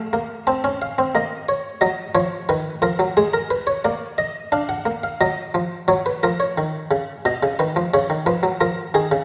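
Contemplative and serious, this fragment of a baroque-style two-part invention in Eb minor moves at 89 BPM in a straight 3/4, played by a solo buff-stop harpsichord whose Italian-style tone sounds plucked, muted and lute-like, placed up front and spanning B2 to A5. The harmony passes from F through Bbm, Ebm, Abmadd9 and Bb to Ebm/Gb, then a second section opens at 5.9 s, moving from Ebm to Badd9 and resting on Db. A reverberant recital hall with a 1.7-second decay surrounds the instrument.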